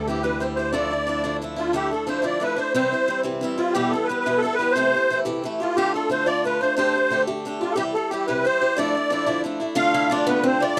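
A reedy, shimmering musette accordion carries the melody up front in this spirited, wild Celtic jig in D dorian at 120 BPM in 6/8, over a bright, boxy picked swing-style acoustic guitar with audible finger squeak, while a rich bowed cello holds a vibrato drone on D until 1.8 seconds and a mellow, metallic double-strung Irish bouzouki joins with a second line at 9.8 seconds, all captured in a dry, close 1970s-style studio sound with a moderate booth ambience.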